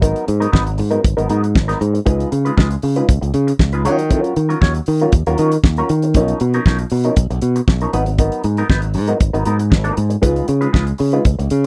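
A damped 1970s drum kit with a fat snare and tight kick sits up front in this sultry, glamorous disco piece at 118 BPM, joined throughout by a bright, direct fingered electric bass and a mellow, dark, compressed electric guitar through wah, all moving over Abm9, Db9, Ebm9 and Bmaj9#11 chords in a dry, close 1970s-style studio sound.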